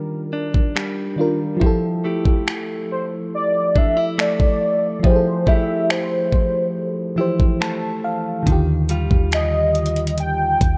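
A straight 4/4 groove at 70 BPM, with up-front finger snaps, metallic hi-hat and a knocking kick arriving at 0.5 s, carries this romantic, tender contemporary R&B excerpt, where a velvety, detuned synth lead with vibrato, chorus and digital delay sings the melody over a warbling, vintage FM electric piano through phaser, which adds a fill at 7.2 s, bright picked clean electric guitar arpeggios, and a deep, boomy sine 808-style bass entering at 8.5 s, all moving between Ebmaj9 and Fmaj9 in light reverb with lossy artefacts.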